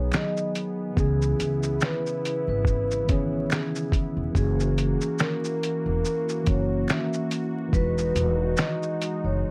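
Vinyl crackle runs through this cosy, nostalgic lo-fi hip hop excerpt at 71 BPM. A soft-mallet vibraphone carries a ringing, mellow melody with slow motor vibrato, delay and plate reverb over a clean tine electric piano with a cassette tint, a smooth, detuned analog pad and a woody, growly pizzicato upright bass. From 0.1 seconds a muffled, compressed, pitched-down sampler drum kit with a thumpy kick and fat snare sits up front with very quiet finger snaps, swinging gently in a small room through chords moving from B6 and C#m7 to F#7 and Emaj9.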